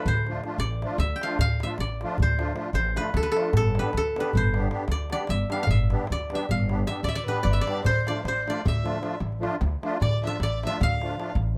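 A bright, dry koto leads this wild, festive Balkan wedding-band excerpt in 11/8, its fingerpicked melody sitting up front over a reedy, shimmering musette accordion and a thumpy, gut-strung pizzicato upright bass that is also up front. A clay-shelled darbuka struck with hard hands keeps the straight pulse and plays a fill at 7.0 seconds, when a smooth, bowed violin with rich vibrato enters as a second line. The production is dark, with moderate studio reverb.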